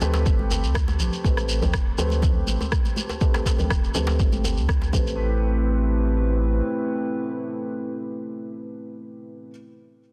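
Afro house with a driving, spiritual mood, cut from a longer piece and built on a steady 4/4 pulse. A dark, moody analog pad sits up front holding a sustained Am9 chord, its detuned, wave-folded tone thickened by chorus and pumping against the sidechain. A felt-muted upright piano adds soft, intimate stabs with audible action noise, passed through a low-pass filter and delay, with a filter sweep running across it through the first 5.2 seconds. A round sine sub bass stays up front beneath them until 6.6 seconds, while a deep, layered electronic kick, a produced rim click, bright thin-skinned congas, a tight cracking djembe and a grainy shekere drive the groove before falling away around 5 seconds. The later passage leaves pad and piano hanging in a small room ambience, all under a dense, heavily limited modern master.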